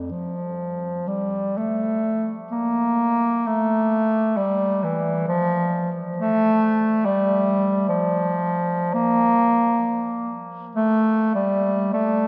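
A cathedral reverb with a 5.7-second decay surrounds the sound, so every note hangs in a vast, echoing space. Alone and up front in this classical excerpt, a bass clarinet plays from 0.0 to 12.3 seconds, its tone clear, punchy and a little vintage. The mood is lyrical and serene, set in F major with a 3/4 metre. The tempo moves freely between 53 and 73 BPM, and the rubato gives the line an expressive, unhurried breath. The melody stays in the instrument's low register, between F2 and Bb3, in a short passage cut from a longer piece.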